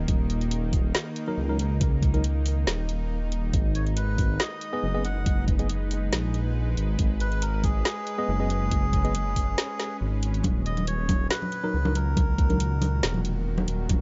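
Deep dubstep at 139 BPM in Eb minor with a half-time, lightly swung feel, meditative and heavy, this cut from a longer piece rests on a dark, rumbling detuned saw bass up front and a knocking electronic kick, joined by woody snare and metallic hats, while a tense, string-like drone sustains chords underneath, a worn, slightly out-of-tune tine electric piano adds gritty stabs through dub echo from 1.3 seconds, a reedy, breathy melodica carries the melody from 3.8 seconds, and ringing congas slip into the background at 10.4 seconds as the harmony moves from Abm to Ebm, all in a dry, dark mix.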